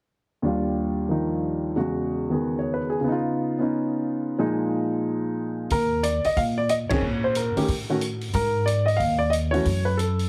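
Swinging and relaxed, this short jazz piano trio passage opens with a smooth, vintage grand piano carrying the melody alone, up front with plate reverb, until a woody, thumpy pizzicato upright bass on gut strings and a distant, roomy drum kit with dark cymbals and a boomy kick join at 5.7 seconds, the band striking an accent at 6.9 seconds, all heard through a heavily compressed, radio-like sound with light reverb.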